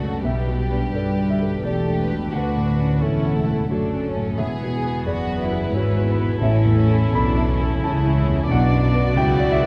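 In a rubato 3/4 at 87 BPM in D major, this bittersweet, longing cinematic film-score passage, cut from a longer piece, sets a distant, sul tasto violin melody behind a rich, intimate second violin line, with a mellow, deep-bassed grand piano in the accompaniment alongside floating violas and very quiet, ringing thumb-plucked harp arpeggios, while woody double basses and smooth-topped cellos hold the bass through Gadd9, Dmaj7, Eadd9, A and Bm in a moderate scoring-stage reverb.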